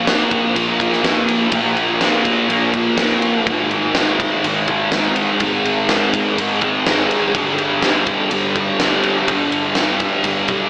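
A straight 4/4 pulse at 124 BPM drives this melancholic, dreamy passage of shoegaze and dream pop rock, cut from a longer piece. Up front, a thick, double-tracked fuzz guitar plays a picked, distorted riff coated in lush chorus, moving from Bb5 to Ab5 at 3.5 seconds and settling on G5 at 7.3 seconds. A huge acoustic arena kit fills a big room with a punchy kick, a fat snare and ride cymbal. Underneath, a vintage foam-muted fingered electric bass sits in the background, dark, round and amped. The whole mix is soaked in a cathedral-like reverb with a long 4.0-second tail and filtered through a hazy AM radio character, which gives the 10.7-second passage a blurred, distant glow.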